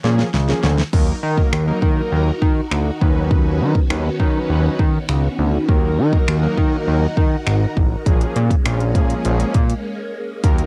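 A dry home cassette sound frames this confident, driving dance-pop clip in Eb minor at 101 BPM, where a punchy, up-front electronic pop kit of kick, fat snare, metallic hi-hats, finger snaps and crash opens with a fill, a thick sawtooth analog bass with a filter sweep pumps beneath a bold, detuned polysynth, a swirling vintage string machine drenched in phaser and ensemble chorus joins at 0.9 s, and a brief break arrives at 9.8 s.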